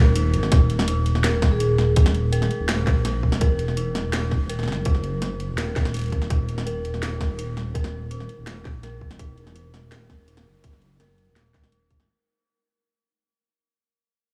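A dark, spacious half-time drum and bass passage, cut from a longer piece, opens with an eerie, inharmonic FM synth bell playing arpeggios through chorus, phaser, low-pass filter and dub echo over a deep, rumbling detuned saw bass; a short break at 0.2 seconds brings in a cracking snare and bright hats, an overdriven, tight electronic kick arrives up front at 0.5 seconds as the passage begins to fade out, and a metallic, ringing vibraphone adds a single background note with dub echo at 1.5 seconds, all inside a small digital room ambience.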